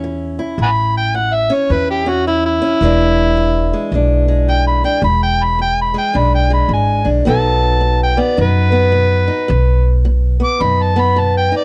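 Swung eighths in 4/4 drive this rollicking, swaggering acoustic country blues excerpt, where a gritty, amplified overdriven harmonica takes a jazz-style solo up front with tongue slaps and scooped notes from 0.6 seconds, over a bright, boxy fingerpicked parlour steel-string guitar with audible finger squeak and a woody pizzicato upright bass, moving through A, E7 and B7 in light reverb.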